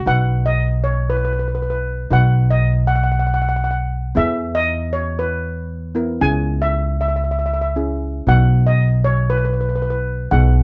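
A dry, close 1970s-style studio sound frames this bouncy, sunny calypso excerpt in B major, moving at 117 BPM in a straight 4/4. A double-seconds steel pan played with medium rubber sticks carries an airy, shimmering melody up front, while a second pan struck with hard rubber sticks supplies a bright, full accompaniment beneath it. A woody, thumpy pizzicato upright bass on gut strings sits prominently in the mix, anchoring the changes from B to E, C#m and back to B.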